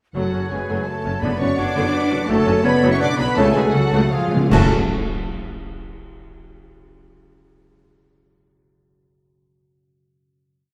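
A stormy, dramatic classical orchestral piece in F# minor and 3/4 at 150-170 BPM opens at once with lush, intense violins carrying the melody, a second violin section doubling it at the octave, pure flutes in sixths and unison, a clear clarinet counter-melody, a driving viola ostinato, mellow horns, sweeping harp arpeggios, a very quiet cello doubling, double basses and a very quiet tuba on the bass line, with hard-mallet timpani entering at 1.2 s and cymbal swells, crashes and bass drum strokes at 2.3 s as the music slows toward a timpani fill and a full accent on the closing F#m chord at 4.5 s, set in a dark, reverberant scoring-stage sound.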